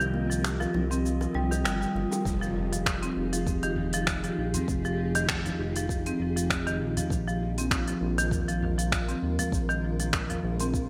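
Organic downtempo at 99 BPM in F minor, this hypnotic, earthy fragment of a longer piece moves with a lightly swung 16th-note feel. It opens with a short break over a C7sus4 chord: a filter sweep runs across the woody, hard-mallet marimba arpeggios, while very quiet bright hand-struck congas and bongos and a faint glassy, drifting harmonic texture add color. At 2.3 seconds a deep electronic kick enters alongside a background impact, and the harmony settles onto Fm9 before shifting to Bb7(no3) at 7.1 seconds. Throughout, a smooth, detuned synth bass with tube saturation and a cloudy, blurred granular pad breathe together under sidechain pumping. The up-front drum kit of finger snaps, crisp hats, shaker and toms sounds tape-warm through a gated reverb, and the marimba carries a band-limited vintage tone with digital delay. A moderate plate reverb and a bright 1980s-style digital sheen frame the whole sound.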